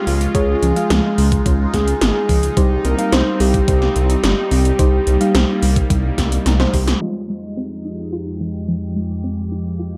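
A dark, warm production with light reverb frames this romantic, nostalgic synthwave excerpt at 108 BPM, where an octave-layered synth lead with vibrato carries the melody until 6.5 seconds over a swirling, sidechain-pumped phased pad, very quiet round plucked arpeggios, mellow FM electric piano stabs in the background, an up-front rumbling detuned saw bass, and overdriven drums with a thumpy kick, gated snare and metallic hats, before a drum fill at 6.2 seconds leads into a closing passage on Fm7 where filter sweeps move across the pad, pluck and electric piano.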